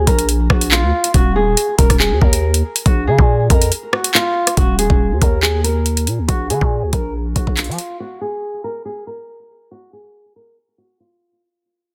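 Tense, cold drill hip hop in Eb minor at 140 BPM with a half-time feel, cut from a longer piece. A fingerpicked flamenco guitar carries the melody through a low-pass filter and delay, over a growling, buzzy 808-style bass with a fast attack and up-front electronic drums built on a knocking kick, metallic hi-hats, handclaps and rim clicks. After a short break at 3.7 seconds, a filter sweep runs across the guitar as the track fades, and the bass and drums drop out by 7.9 seconds, leaving the guitar alone until 11.4 seconds in a dry, dense, heavily limited mix.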